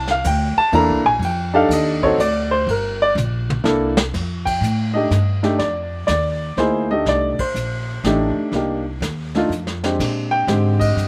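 Playful and sophisticated, this swinging jazz piano trio in 3/4 at 123 BPM moves through F mixolydian, with a natural-sounding baby grand piano carrying the melody up front over a woody, pizzicato upright bass on steel strings. Brushes on a vintage kit with a medium-tuned snare, tight kick and rolled-off top sit lower in a small, pumping room, adding fills at 3.2 and 9.5 seconds, while the band hits a shared accent at 7.3 seconds. The dry, close sound lets rich chords such as C13, F13 and Bb13 ring clearly in this fragment of a longer piece.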